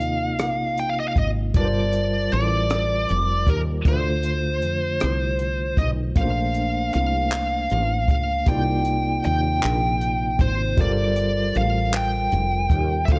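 A slow, sultry six-eight R&B groove in G minor at 52 BPM opens at once with a biting, overdriven lead guitar singing the melody through slapback echo, over a barky tine electric piano pulsing with fast tremolo. Underneath, a woody, growly fretless bass with ensemble chorus and a compact cocktail kit of handclaps, hi-hat, rim click and a punchy kick carry the late-night mood through chords such as Cm7, Gm11 and Bbmaj9. The sound is dry and close, with a faint mains hum, in a 13.2-second passage cut from a longer piece.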